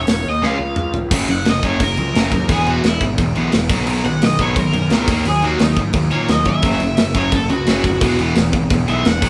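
Recorded live by a band in one large studio room with moderate reverb, this rowdy, energetic punk rock passage at 174 BPM in F# major opens with a raw garage guitar, a growly fuzz bass and a tight, up-front acoustic drum kit with bright cymbals. At 0.4 s a drum fill arrives alongside two picked rhythm guitars, one distorted and one warm, sludgy and set in the background. From 1.1 s the garage guitar takes an overdriven solo over chords moving through F#, E, B and D#m.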